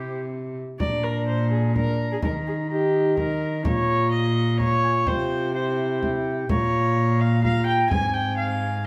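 A dark, gut-string cello sits up front, grounding this brief cut from a solemn, rustic Renaissance-style consort dance in triple time. A single bowed viola with a nasal, reedy, period-style tone and an airy bow carries the second line, while a close-miked solo oboe with light vibrato sings the melody. A mellow trombone with a smooth top fills in the accompaniment. A deep, dry frame drum, struck with hard hands, joins at 0.8 seconds and drops out at 8.1 seconds. The harmony moves from C through Bb, Eb and Bb minor to Csus4 and C, then back to Bb minor before settling on Ab, all heard from further back in a wet stone room.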